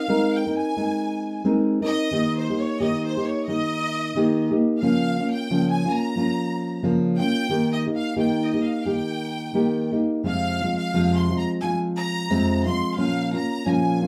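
Passionate and dramatic, this mariachi-flavored Mexican folk excerpt moves with a lightly swung 4/4 feel through chords from Abadd9 and Eb to Bbm/Db, Fm and Bbm. A lush, focused violin section carries the bowed melody with vibrato in its upper register, sitting lower in the mix than the dark, full-bodied nylon-string guitar, whose thumb-plucked accompaniment comes up front with audible finger squeak. A wet studio reverb places the performance further back in the room throughout the 14.1 seconds.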